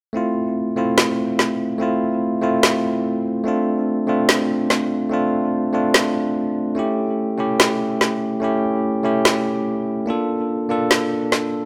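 Dreamy and bittersweet, this future bass excerpt moves at 145 BPM with a half-time, lightly swung feel, as a bright, bell-like tine electric piano with tape echo carries chords drifting from Am through A7 to Bbmaj7, joined at 1.0 seconds by an up-front, woody electronic snare with a tape-warm edge, all set in a lush hall reverb.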